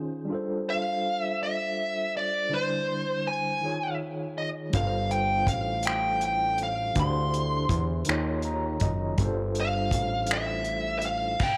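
The smooth overdriven lead guitar stands out, carrying a dark, picked melody up front from 0.7 seconds in this tender, intimate excerpt of slow six-eight R&B at 54 BPM. Beneath it, a barky tine electric piano plays bright, lightly overdriven chords with a medium tremolo through a combo amp, moving through suspended ninth chords on G, D and E-flat. At 4.7 seconds a fat analog bass enters, thick and detuned with a sawtooth edge, a filter sweep, a fast attack and a decaying tail. A soul drum kit joins at the same moment, acoustic and close in a small room, with a tight kick, dark cymbals, hi-hat, crash and finger snaps under a rolled-off top. The electric piano steps forward with a fill from 8.1 to 9.2 seconds, and a moderate spring reverb gives the whole mix a soft, lingering glow.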